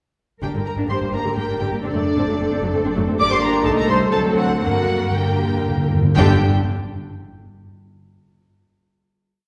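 Muted, veiled violins carry a restless, dramatic G minor tune in 3/4 at 114-133 BPM while a second violin section doubles it at the octave in this complete, quick classical-period movement for symphony orchestra, with muted violas adding a driving ostinato and sustained chords, muted cellos weaving a counter-melody over sustained bass, and close, dark double basses playing a driving bass ostinato, as round, soft-mallet timpani in the background strike bass notes and return with a fill at 4.6 seconds while the pulse slows from 2.5 seconds toward a final chord at 6.2 seconds, all heard from further back in a wet concert hall.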